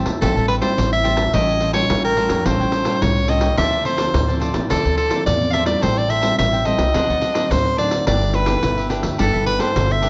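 A bright, crisp picked cavaquinho and a warm, thumb-plucked classical nylon-string guitar open this festive samba and choro excerpt, joined almost at once by a dark, woody pizzicato upright bass on gut strings and a jingly pandeiro. An edgy soprano saxophone sits up front with a jazz-style vibrato solo over a joyful minor progression moving from Am7 through A7alt, Dm9 and D7b9 to G69. A moderate large studio reverb lends the acoustic ensemble a roomy glow, while the top end rolls off above about 7.7 kHz.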